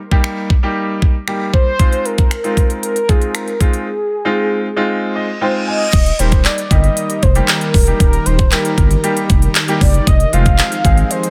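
A straight, carefree dance-pop groove drives this excerpt, with an up-front, layered electronic kit of knocking kick, crisp hi-hats, finger snaps, handclaps and crash cymbal. A clear, polished baby grand piano supplies pumping accompaniment chords from the start. At 1.5 seconds a mellow, horn-like synth lead takes the melody, its round, detuned sawtooth tone carrying a soft attack, filter swell, vibrato and portamento, thickened by chorus and tape echo. A break follows, capped by a grand piano fill and a brief electronic reverse cymbal that lead into the next section at 5.9 seconds. There a deep, thick, saturated sub bass arrives with a fast attack and pumping sustain. An ethereal, airy pad enters in the background at 7.0 seconds, its slow-attack chords softened by ensemble chorus and built-in reverb, all set in a digital ambience.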